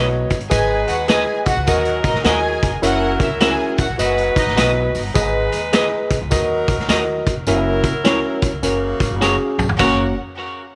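A swung 4/4 groove at 103 BPM drives this joyful, uptempo 1960s-style soul excerpt in F# mixolydian, as a gritty, saturated vintage drum kit with dark cymbals and a jingly tambourine in the background support a worn, slightly out-of-tune tine electric piano up front, a woody, thumpy pizzicato upright bass, compressed guitar stabs at the edge of break-up and a bright saxophone section with vibrato, while a lush, distant violin section plays from 0.5 to 4.5 s and returns at 9.8 s just after a drum fill, with tape echo on the saxophones, guitar and violins and light reverb in the room.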